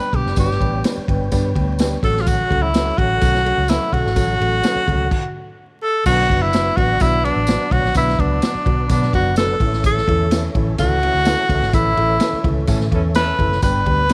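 A breathy tenor saxophone sits up front with the melody, its whispered, intimate tone marked by vibrato, soft attacks and scooped notes in a jazz style. This is a passage from an uptempo 1960s-style soul piece in B minor at 127 BPM in a straight 4/4, and it feels urgent and passionate. A dark, woody upright piano with long sustain carries the accompaniment. A very quiet, mellow tonewheel organ holds sustained chords through a rotary speaker, with key click and chorus vibrato. A round, foam-muted electric bass and a swinging big-band drum kit with a punchy kick drive the groove, while a jingly, compressed tambourine sits in the background. The band hits a stop at 5.1 s and an accent at 11.7 s, and a warm horn section slips in behind at 12.7 s for a brief second line, all wrapped in light reverb, studio ambience and vinyl crackle.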